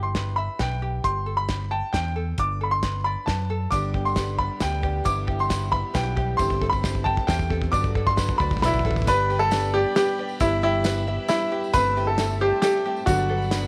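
This hopeful, warm indie folk excerpt in 3/4 at 135 BPM and in G major opens with a bright, woody upright piano carrying the melody up front, over light fingerpicked ukulele arpeggios and a round, punchy picked electric bass, with a cloth-damped, thuddy drum kit entering at 0.1 seconds with a tight kick, a medium-tuned snare, hi-hat and a rolled-off top. The harmony circles through Em/G, Am7/G and Bm7/G before settling on G, all voiced over G in the bass. At 3.7 seconds the arrangement fills out as a dark, mellow baby grand piano with audible action noise, a jumbo steel-string acoustic guitar with fresh strings and finger squeak, a very quiet chamber string section bowing sul tasto with light vibrato, and a jingly tambourine join in the background. The whole opening stretch to 9.1 seconds works as a build-up, with a drum fill running through it. A new section begins at 9.1 seconds, and a small room ambience surrounds the full ensemble.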